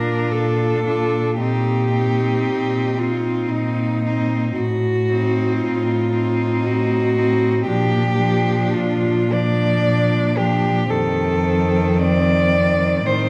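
A dark, reverberant recital hall with a 1.7 s decay surrounds four bowed cellos in this serene, lyrical classical passage, cut from a longer piece. It moves slowly at 57 BPM in 3/4, with rubato phrasing in Bb major. Up front, the top cello carries the melody between Eb4 and D5 with a warm, even tone, light vibrato and a smooth top. Beneath it, a clear-voiced second line sings with vibrato, while a third cello supplies an intense accompaniment from Eb3 to D4. The bass cello, close and intimate, plays sul tasto with a soft attack and airy bow between F2 and Bb2. All four sound throughout the 13.3 s, moving from Bb through Cm7/Bb and Adim7, back to Bb, and arriving on F7.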